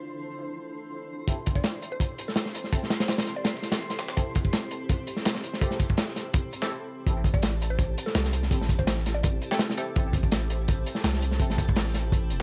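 A dry cut from a longer drum and bass and jungle track, nostalgic and raw, opens on a blurred, cloudy granular pad and a sparkling granular texture in the background. At 1.3 seconds a crunchy, punchy acoustic breakbeat kit arrives up front, layered with a compressed, pitched-up sampler-style break and tambourine, while muted sawtooth dub chord stabs with phaser, lush chorus and dub echo and a woody, round FM mallet pluck join the build. After a brief stop at 6.7 seconds, the drop at 7.1 seconds brings in a deep, long, tube-saturated 808-style sine bass.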